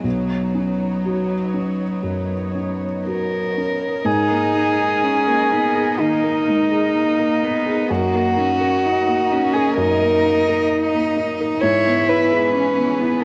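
Neoclassical piano and strings in G# minor, this reflective, longing excerpt from a longer piece drifts at a rubato 57-66 BPM, with a felt-muted upright piano offering mellow, intimate accompaniment, its action noise audible, while a cello with an airy bow carries a second line and a chamber string section holds sustained chords in the background. At 3.1 seconds a dark, close violin enters with the melody, bowed sul tasto with vibrato and a smooth top, as the harmony moves from Badd9 through G#sus2, D#m/F# and E/G#. A moderate spring reverb and the soft grain of a home cassette recording give the piece a hushed, private quality.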